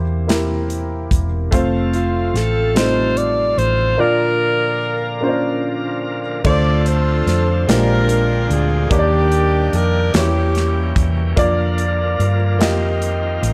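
Slow gospel in 6/8 at 49 BPM in Bb major, hopeful and jubilant, opens with a woody, slightly detuned upright piano and a round, dark hollow-body electric bass, joined at 0.3 seconds by a polished studio drum kit with crash, hi-hat, tight kick and medium-tuned snare. A bright tonewheel organ, lightly overdriven through a slow rotary speaker, sits low in the mix with sustained chords, while a breathy, whispered alto saxophone with vibrato carries the melody from 1.9 seconds, and a mellow saxophone section takes up the melody at 6.5 seconds. Light reverb surrounds this excerpt, cut from a longer piece, as the harmony moves through Dm7, Ebmaj7 and Edim7 toward a closing F9sus4.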